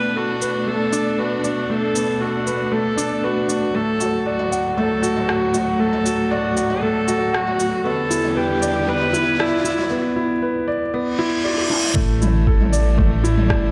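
An intimate grand piano with audible action noise plays a riff through tape echo at the heart of this cinematic piano and strings electronica cut from a longer piece, moving at 117 BPM in a straight 4/4 in B minor. Alongside it, a single distant, reedy viola with light vibrato and a period gut-string tone carries the melody, also with tape echo, until it drops out at 9.9 s. A focused studio string section holds bowed chords underneath with sidechain pumping, while a tape-softened electronic kit of rim click, shaker and toms, re-recorded in a small room and high-pass filtered, keeps time over Bm7, D and Em7. A riser and reverse cymbal enter at 7.8 s, and a drum fill completes the build-up into the drop at 12.0 s on A7sus4. There a rumbling detuned saw bass with a fast attack arrives up front, pumping against the beat, joined by a muffled, thumpy pitched-down kick, all set in a moderate scoring-stage reverb.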